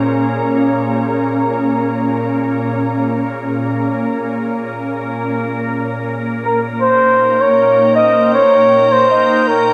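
A wet spring reverb and a small-room ambience surround this short ambient excerpt, giving it a hazy, deep atmosphere. A soft, organ-like pad holds sustained chords from the very start, its pure, sine-based tone slightly detuned and thickened by ensemble chorus, with slow attacks and long releases that keep it calm and bright. The harmony rests on Bbm7 before shifting to Eb/Bb at 6.8 seconds. At 6.4 seconds a trumpet with a bucket mute enters up front, playing a brief classical-style solo melody in a dark, veiled voice. Dub echo trails the trumpet's lines, making it feel distant and roomy against the pad.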